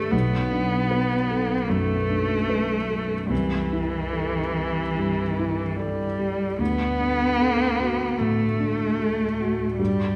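A rich, bowed cello with expressive vibrato and portamento sings a second line over a felt-muted upright piano, whose dark, mellow accompaniment carries audible action noise, both up front in a wet concert hall reverb for this intimate, tender neoclassical excerpt in D major at a rubato 75 BPM, moving from Bm7 through C6 to D across its 10.2 seconds.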